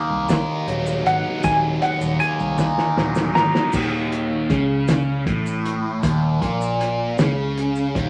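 Psychedelic rock in a slow, hypnotic 6/8 at 52 BPM in Eb dorian, with a mysterious air: a bright, double-tracked fuzz guitar riff soaked in distortion and phaser sits up front over a round, foam-muted picked bass, a cloth-damped, thuddy drum kit with a fat snare and dark cymbals, and grainy maracas tucked in the background. A twangy, slightly broken-up lead guitar with wah sings a high melody from 1.1 to 3.7 s, joined by a drum fill from 2.6 s, before the Ebm harmony gives way to Eb5, the whole excerpt bathed in studio reverb and vinyl crackle.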